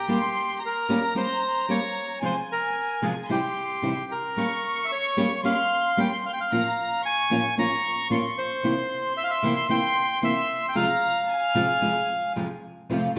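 A rubato 4/4 pulse at 112 BPM carries this sultry, tense tango excerpt in F harmonic minor, where a reedy, close-miked bandoneon sings the melody up front while a violin section with gut-string tone and light vibrato traces a smooth second line. A bright, fingerpicked nylon-string guitar supplies the accompaniment through a chord progression that moves from Gdim to C7 before settling on Fm at 10.8 seconds. A rich, focused bowed string section adds brief stabs at 12.9 seconds, and the band plays live together in one room, bathed in a wet, large-studio reverb.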